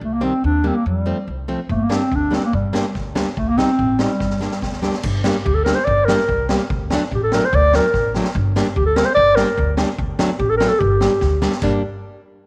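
A straight 2/4 pulse at 145 BPM, speeding up throughout, drives this soulful, bittersweet klezmer excerpt in G minor, which turns to G harmonic minor at 5.1 s. Up front, a dark clarinet with a smooth top sings the solo melody in classical style. Beneath it play a woody pizzicato upright bass and a warm, fingerpicked nylon-string guitar, while a street-band drum kit with a boomy kick, a high-tuned snare, crash cymbal and a rolled-off top enters at 1.7 s and adds fills, all set in moderate plate reverb and small room ambience.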